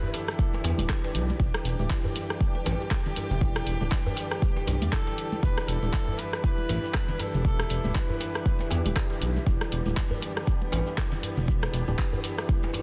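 Afro house at 119 BPM in E minor, earthy and driving with a swung sixteenth feel, built on an up-front deep electronic kick and a smooth, gliding sawtooth synth bass with tube saturation and sidechain pumping, while a tape-toned deep house kit of handclaps, hi-hat and rim click (its snare softly clipped) mingles with cracking djembe, hard-hand congas and grainy shekere, a woody kalimba rings out echoing arpeggios, a reedy tonewheel organ with slow rotary speaker and dub echo stabs in the background over distant, floating chamber strings holding gritty sampled Em7 chords, and a veiled bucket-muted trumpet appears briefly at the start and returns for a jazz-style solo melody with dub echo from 4.9 to 9.0 seconds in this excerpt from a longer piece.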